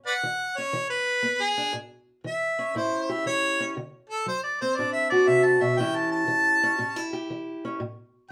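A dark, boxy fingerpicked parlour guitar opens this swaggering, rollicking excerpt of swung acoustic country blues, joined almost at once by a distant, roomy harmonica soloing in a jazz style with light vibrato and tongue slaps over changes from A7 to D7, until the harmonica stops at 7.1 seconds and the guitar carries on to 8.3 seconds in moderate studio reverb.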